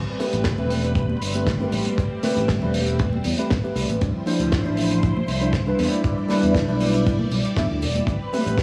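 Groovy and sensual, this nu-disco piece at 118 BPM in A minor moves through Am9, Dm9 and Em7 as a lush, vintage string machine with phaser, ensemble chorus and sidechain pumping holds sustained chords over a bright, growly fingered electric bass, while a mellow tine electric piano with analog chorus, tape echo, sidechain pumping and a filter sweep enters at 0.2 seconds alongside a damped 70s drum kit with a fat snare and hi-hat and very quiet bongos, tube shaker and congas, before a tight, up-front kick drum arrives at 0.5 seconds, the recording carrying the light reverb and small room ambience of a home cassette take.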